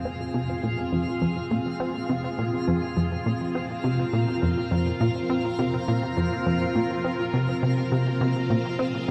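Ambient music at 103 BPM in F minor, hypnotic and mysterious, resting on a single Fm chord for this short fragment of a longer piece. A lush vintage string machine holds sustained chords with slow-attack swells of ensemble chorus, while a twinkling granular texture adds a bright, sparkling shimmer on a sustained F4 with its own built-in reverb. Up front, a punchy, funky analog bass plays a plucky riff from 0.1 seconds, its detuned, wave-folded tone treated with chorus and delay, all set in a vast cathedral-like space with a cassette-tape character.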